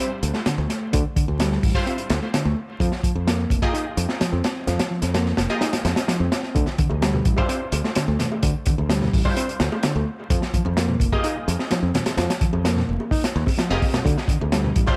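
Breakbeat at 128 BPM in D phrygian, this funky, energetic excerpt sets a reedy electric piano riff, roughened by tube saturation, 12-bit sampler grit and dub echo, over gritty, punchy breakbeat drums with a rolled-off top and a bright, up-front fingered electric bass, while bold detuned orchestra-hit-like synth stabs with phaser and echo arrive at 1.7 seconds and soft-handed congas and bongos join at 6.8 seconds, all moving through Dm11, Fm11 and F7sus4 in an echo-heavy mix dusted with vinyl crackle.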